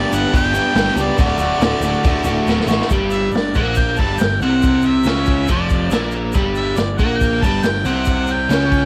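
A cassette home recording in a small room gives this rowdy, swaggering garage rock cut, taken from a longer piece, a lo-fi, roomy feel at a straight 139 BPM in 4/4. A biting, double-tracked overdriven guitar sits up front with the riff, a round fuzz-drenched picked bass growls underneath, and a grainy egg shaker rattles in the background. A clear harmonica carries the melody with light vibrato and scooped notes, while a vintage drum kit with dark cymbals and a punchy kick plays a fill at 2.5 seconds that leads the chords from G and D into a G5 section at 2.9 seconds.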